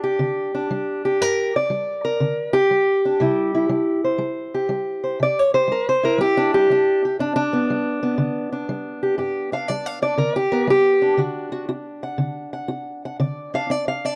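A dark, boxy fingerpicked parlour steel-string acoustic guitar sits up front with audible finger squeak, playing alone through a rollicking, swaggering acoustic country blues cut from a longer piece, swinging at 120 BPM in 4/4 in G major over G5, C, G and D chords, captured in a dry, close 1970s-style studio sound with a touch of studio reverb.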